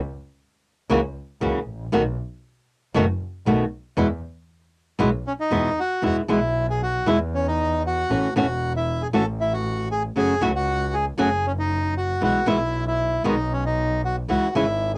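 A fingerpicked flamenco guitar accompanies this playful, passionate tango, its warm acoustic tone set up front with a cassette-tape colour as it enters at 0.9 s. Underneath, a single bowed double bass holds the low end from the start, rich and boxy with an even vibrato. At 5.3 s a reedy, dark bandoneon takes the melody, also close up and tinged by the same cassette character. The piece sits in E major at 117 BPM in 4/4, but the rubato feel keeps the pulse elastic, and the harmony moves from F#7/C# and B7 to E before shifting at 6.0 s into a second section through A6, F#m, E/B and B, ending on C#m. The modest booth ambience and home cassette recording give this excerpt from a longer piece an intimate, homemade sound.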